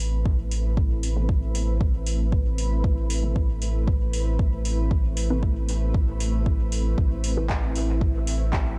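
Dub techno at 116 BPM in A minor, this short cut from a longer piece holds a deep, meditative mood over a single Amadd9 chord. A cloudy granular pad sustains blurred, detuned chords from the start, its built-in reverb and sidechain pumping giving it a breathing haze, while a round analog bass sits up front on a low A with ring-modulated depth and the same pumping. An electronic kick drum enters at 0.3 seconds, layered and tape-warm, anchoring the groove alongside a soft vintage rhythm box whose handclaps and metallic hats carry an overdriven edge and the air of a large room. From 1.2 seconds to 7.5 seconds a muted, detuned chord stab drifts in the background through phaser and dub echo, with a filter sweep shaping it across the passage. The production is dark and dry overall, with little reverb beyond the pad's own.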